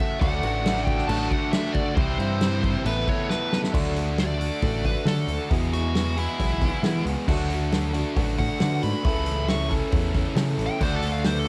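A nasal, overdriven lead guitar with a parked wah takes a solo from 3.7 seconds in this nostalgic, hopeful folk-rock and heartland-rock excerpt at 136 BPM in D major, shifting to D lydian, over a double-tracked overdriven electric guitar riff, a round, punchy dub bass, an up-front country drum kit with a boomy kick and a fill just before the solo, a full-bodied jumbo acoustic guitar and a very quiet, woody upright piano, while a reedy, breathing harmonium holds chords until 3.7 seconds and returns at 10.8 seconds, all in a small room on a home cassette recording.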